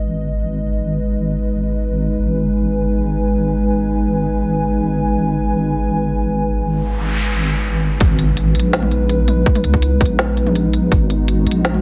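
A dark, detuned analog pad with sidechain pumping and chorus holds sustained chords over a deep, saturated wobble bass, setting a cinematic, heavy half-time drum and bass mood in this cut from a longer piece. An electronic noise sweep runs from 6.9 seconds into a drop at 8.0 seconds, where an impact lands alongside a hard-clipped, overdriven kick. An organic electronic kit with a woody snare, smooth hats and toms joins it, all set in light digital ambience.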